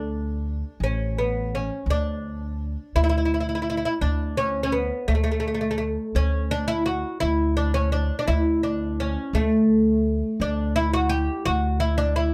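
This Persian modal ensemble piece, cut from a longer work, has a festive, warm mood and moves at 56 BPM in dotted quarters, in a straight 6/8 and in the D dastgah mahur, tuned to A4 = 439 Hz. The oud carries the melody between A3 and G4, its fretless, plectrum-plucked double strings giving a bright, woody voice. Beneath it, the upright bass holds the low end from A1 to D2, with pizzicato steel strings that sound woody and warm. Both instruments play together from start to finish and sit up front in the mix, caught by close, detailed microphones with a touch of light reverb. A new section begins at 1.9 s and carries the piece through to 12.3 s.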